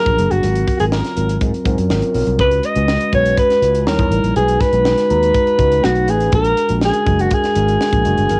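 A breathy alto saxophone sits up front and carries the melody in a jazz style, its subtone and scooped notes given a vintage cassette-tape color. This fragment of a longer piece is polished 1980s jazz-funk pop in 4/4 with a straight feel, and its mood is bittersweet and slick. A mellow tine electric piano accompanies from the start, clean and played through its built-in speakers, with subtle chorus and the same tape character. At 0.1 s a sustaining fretless bass joins, growly and amped with analog chorus, alongside a tight funk drum kit of hi-hat, a high-tuned snare and a punchy kick heard in a small room. The harmony moves through rich chords such as G#13, D#7b9 and B9 before reaching A#aug7, while moderate studio ambience and a home cassette recording keep the overall sound soft-edged and intimate.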